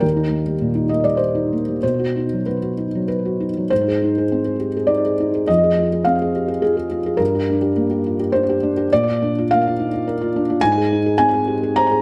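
A felt-muted upright piano plays alone from the start in this short excerpt of a reflective and wistful neoclassical minimalist piece, moving in a rubato 3/4 at roughly 94-108 BPM through chords of Eb, B, Ab, Fm7, Gm and Bb across a range from Eb2 to Bb5, its thick-felt, dark and intimate tone sitting up front with audible action noise, a slapback echo and light reverb, and a new section beginning at 3.7 seconds.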